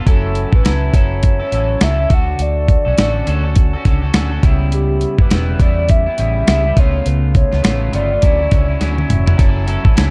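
Swung sixteenths drive this hazy, nostalgic indie and bedroom pop snippet, where a gritty, compressed sampler-style drum kit with a thumpy kick sits up front beneath a round, foam-muted fingered bass, a twangy, slightly broken-up electric guitar with subtle chorus and warbly pitch drift, and a hollow, woody clarinet-like synth lead carrying the melody with vibrato over lush seventh and ninth chords, in a dark, dry production with a drum fill at 8.8 seconds.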